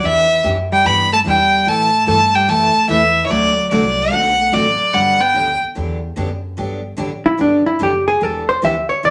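A wet studio reverb surrounds this cheerful, down-home western swing excerpt, where a clear, up-front bowed fiddle with light vibrato carries the melody until 5.6 s over a bright picked steel-string acoustic guitar with finger squeak, a woody, thumpy pizzicato upright bass and a dark, compressed hollow-body jazz guitar that plays a second line before taking a solo from 6.6 s.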